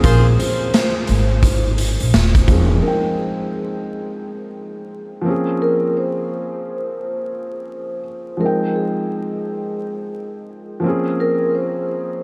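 A ringing vibraphone played with soft mallets carries the melody, its slow motor vibrato colored by tape echo, over a dark, mellow baby grand piano with a cassette-tape tint, in this moody, reflective boom-bap hip-hop excerpt at 86 BPM in F minor with a swung 16th feel. A woody pizzicato upright bass and a gritty, saturated garage drum kit with a punchy kick sit up front through the opening, then both drop out at about 2.8 seconds, leaving the vibraphone and piano to drift over Bbm9 and Fm9 chords until 12.2 seconds. The dreamy mix is soaked in a huge ambient reverb and dusted with vinyl crackle.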